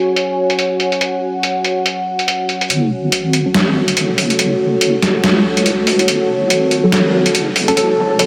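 Deep dubstep with a swung, half-time feel, this cavernous, dark fragment of a longer piece opens on a moody, detuned sawtooth pad with a sine sub octave, sustained and chorused with its own reverb, joined almost at once by a muffled, pitched-down sampler-style kit of hi-hat and snare, overdriven and re-recorded in a small room. At 2.7 seconds a build-up begins as a soft triangle-and-sine wobble bass arrives. From 3.5 seconds a muted chord stab with a filter pluck, moving notch, phaser and dub echo undergoes a filter sweep, all within a dreamy mix soaked in huge reverb.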